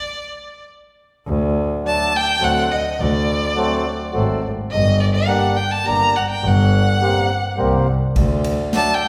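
A straight 3/4 lilt at 104 BPM carries this festive, soulful klezmer piece in D phrygian dominant, cut from a longer performance: a smooth, even violin, richly bowed with vibrato, sings the melody alone over an unaccompanied opening stop before a nasal, earthy bowed double bass enters at 1.3 seconds and a reedy, mellow accordion fills in the harmony over D and Gm. A street-band drum kit arrives only at 8.2 seconds, with a boomy kick, medium-tuned snare and dark ride cymbal, as the chords return to D. The whole ensemble sits in the long, wet reverb of a church or concert hall, lending the bowed strings a spacious glow.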